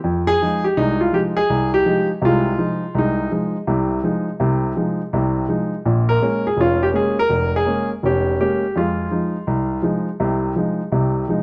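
Moody and cool, this short excerpt of solo jazz piano swings at 166 BPM in F minor, moving from Fm7 to Bbm7 at 5.8 seconds and back to Fm7 at 8.7 seconds. A warm, polished grand piano sits present and up front, ranging from F1 to Bb4 across its 11.4 seconds. A wet echo chamber with a 1.6-second decay surrounds it in a dark production, and the tuning sits slightly flat at A4 = 437 Hz.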